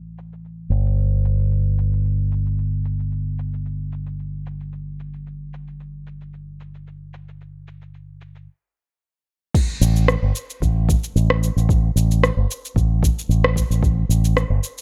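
Smooth and relaxed, this sunset chillout excerpt moves at 112 BPM in 4/4 with a light 16th-note swing, led by a bright, punchy fingered electric bass pushed up front through an envelope filter and hovering between G1 and A1. A tape-warm, produced R&B drum kit sits lower in the mix, its crash cymbal, rim click and shaker softened by low-pass filtering. After a stop from 8.5 to 9.5 seconds, a soft electronic kick recorded in a large room enters up front at 9.5 seconds, all in a dry mix with little reverb.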